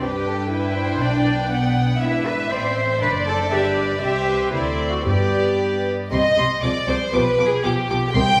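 Heard from further back in a stone room with a lingering reverb, this spirited, graceful excerpt of a quick classical-period orchestral movement in 2/4 sets a pure, floating sul tasto violin melody over a second violin line held up front, with soft-attack violas filling in the accompaniment, close cellos and intimate double basses with light vibrato carrying the bass, and calf-headed timpani sounding in the background at 5.1 s and again at 8.1 s, while the harmony turns to a C minor chord at 6.1 s as the closing section begins.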